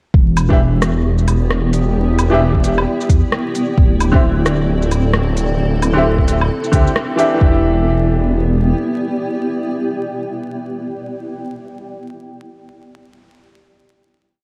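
A shuffled future garage groove at 132 BPM in E minor opens with a muffled two-step electronic kick, deep and roomy, under a skittering beat of crisp hats, rim clicks, shaker and low woodblock, while a menacing, detuned sawtooth bass with a filter swell carries a dub-style line that pumps against the kick. Above, a bright, woody upright piano with audible action noise places sparse echoing chord stabs, and a blurred, granular cloud pad drifts through slowly shifting Em7 and D9sus4 chords, its mellow haze also pumping. The drums drop away around 7.5 seconds and the bass follows by about 8.7 seconds, leaving piano and pad on a final Em7 that lingers until about 11.2 seconds in a rainy, melancholic mix soaked in hall reverb and vinyl crackle.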